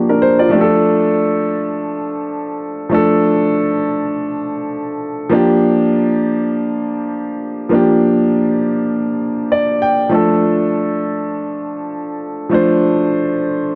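In free time, this hypnotic, sultry afrobeats excerpt features a lone grand piano, warm, polished and up front with long sustain, drifting between Gm7 and Dm chords in a dark production with light reverb and small-room ambience, and adding a brief fill at 9.2 seconds before a new section opens at 10.1 seconds.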